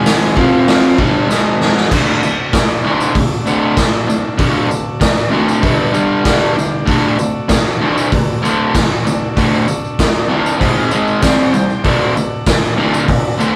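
Garage rock with a swaggering, rowdy feel at 97 BPM in D major, built on an overdriven, double-tracked electric guitar riff up front, punchy, gritty drums with a medium-tuned snare in a bright stone room, a buzzy vintage combo organ holding very quiet sustained chords, and a jingly tambourine in the background, with a drum fill from 1.3 to 1.9 seconds launching the main section, all captured as a rough rehearsal-room recording with light reverb.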